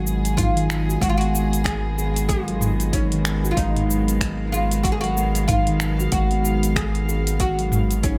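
A round, deep analog bass sits up front on a held G#1, pumping with sidechain compression beneath this 8.2-second excerpt of earthy organic downtempo at 94 BPM in 4/4, with a 16th-note swing in G# dorian over a single G#m7 chord. A bright, woody oud carries the melody with plectrum-plucked double strings and a touch of delay, while a steel tongue drum struck with soft rubber mallets adds mellow, ringing arpeggios through a digital delay. Behind them, a distant, reedy string section with a gut-string tone and light vibrato holds bowed chords that also pump with sidechain compression. An afro-pop drum kit enters at 0.1 seconds with finger snaps, metallic hi-hats, shaker and toms re-recorded in a large room. A punchy, overdriven electronic kick joins at 0.4 seconds and stays in the background, all set in an audible studio ambience with a warm, earthy mood.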